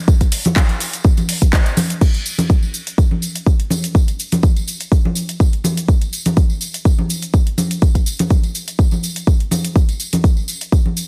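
House groove at 124 BPM in 4/4, with a light 16th-note swing that gives the energetic, bittersweet mood a gentle lilt. An electronic kick drum sits up front, punchy and layered, carrying the pulse from 0.1 seconds until 10.8 seconds. Beneath it a house drum kit adds cabasa, crash cymbal, handclaps and metallic hi-hats, set lower in the mix and playing through to 11.1 seconds. Tambourine and congas bring an acoustic counterweight, close and dry with soft hands and a ringing edge. A short opening section gives way to a second section at 2.0 seconds, and the sound carries a digital ambience with a heavily compressed, radio-like character, as this brief cut from a longer piece rolls on.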